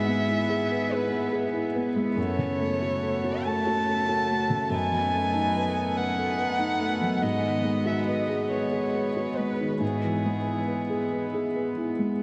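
Neoclassical piano and strings in a reflective, melancholic mood, unfolding slowly at 47 BPM in a rubato 6/8. A soft, intimate felt-muted upright piano sits up front with audible action noise, carrying the accompaniment. A dark, woody solo violin, played sul tasto with vibrato and tape echo, sings the melody until 11.1 s. A smooth, floating cello adds a pure second line, while a reedy, nasal hand-pumped harmonium breathes sustained chords in the background, and the dreamy mix, cut from a longer piece, is soaked in huge ambient reverb and cassette tape haze.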